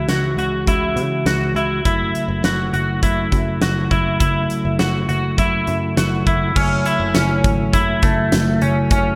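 Hazy and melancholic, this dream pop excerpt moves at 102 BPM in a straight 4/4, set in F# minor and tuned slightly high to A4 = 442 Hz. A soft, flute-like tonewheel organ holds sustained chords through a slow rotary speaker, its vibrato adding a gentle shimmer beneath the harmony as it shifts from C#m to F#m7 at 1.9 seconds. Up front, a clean, twangy electric guitar picks bright arpeggios coated in analog chorus and delay, while a foam-muted picked bass keeps a dark, round low end. A huge arena drum kit enters at 0.1 seconds with a punchy kick, fat snare, hi-hat, crash cymbal and tambourine, all bathed in gated reverb for a big-room impact. The whole mix sits in a lush hall reverb with bright 1980s-style digital production, and the passage moves into a new section at 6.6 seconds before the cut.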